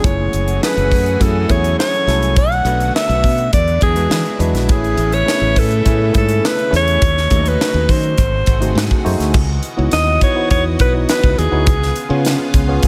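Slick and urban, this polished 1980s jazz-funk pop clip in C# minor moves at 103 BPM, with a breathy, intimate alto saxophone carrying the melody up front through digital delay, scooped notes and vibrato, over a worn, slightly out-of-tune tine electric piano with subtle chorus, a thick detuned unison pad with slow attack sitting in the background, a growly, punchy fingered electric bass, and a crisp fusion drum kit with a high-tuned snare, tight kick and gated reverb, all moving through rich jazz chords like F#m9, G#7b9 and C#m11 before the passage is cut off near 12.9 seconds.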